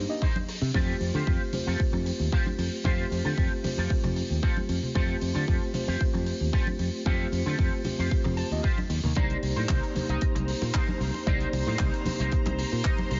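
The electric piano and a bright, direct fingered bass open this sleek, groovy nu-disco excerpt at 114 BPM in a straight 4/4, with the mellow tine keys carrying an analog delay over chords moving from Cm7 to Fadd9. A punchy, layered electronic kick sits up front, joined almost at once by a twangy, picked guitar riff through an envelope filter with analog chorus and delay, very quiet close-miked congas, and a dry, tight funk kit of handclaps and hi-hat. A clean electric guitar fill slips in at 8.1 seconds, and at 9.2 seconds a lush vintage string machine enters with slow-attack sustained chords, its sawtooth ensemble thickened by a sub octave, ensemble chorus and sidechain pumping as the harmony returns to Cm7. The whole mix has light reverb and a heavily compressed, radio-like sound with the top end rolled off.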